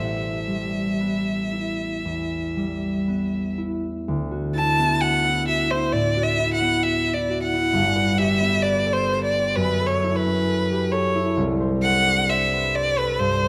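A single bowed violin and a concert harp begin together in this luminous, dreamy impressionist duo excerpt, moving freely with rubato at around 57-69 BPM in 4/4 and D mixolydian, tuned to A4 = 438 Hz. Up front, the violin carries the melody with a rich, focused tone and vibrato, while the harp's mellow, thumb-plucked accompaniment rings across a broad range alongside it. Close, detailed microphones and a moderate scoring-stage reverb frame the duo, and a new passage opens at 4.1 seconds on a D6/9 chord before the harmony drifts through Gmaj7 and F#m7 to C6/9.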